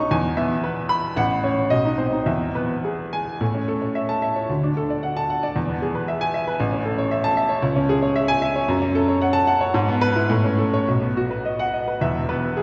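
Heard from further back in a concert hall, this recording is bathed in a wet reverb with a long tail. A clear, natural-sounding baby grand piano with short sustain plays alone from 0.0 to 12.6 s, ranging from E1 up to C#6 in a sparkling, heroic virtuoso study in 2/4, shaped with a flexible rubato. Cut from a longer piece, the passage moves into a new section at 3.4 s and closes on an open E fifth.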